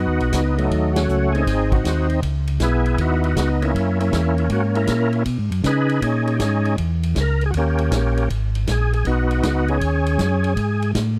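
At 158 BPM in 4/4 with a swung eighth-note feel, this short soul jazz organ trio cut in G# minor moves with a bluesy, soulful bounce. A percussive tonewheel organ carries the melody, its full, thick tone lightly overdriven and ringing with second harmonic percussion, chorus vibrato and a slow rotary speaker. Beneath it, a second tonewheel organ plays the bass line in a mellow, round, dark voice, clean with audible key click and also turning through a slow rotary speaker, sitting up front with the lead. An acoustic big-band drum kit enters at 0.2 seconds with hi-hat, ride, a medium-tuned snare and a punchy kick, its natural big-room sound tucked behind the organs. The band hits an accent at 0.9 seconds as the changes run from a rootless G#m7 through C#m9, F#7 and B69 before landing on a G#7sus4 over D# and breaking off at 10.6 seconds. The dry, close recording has a 1970s studio character with little reverb.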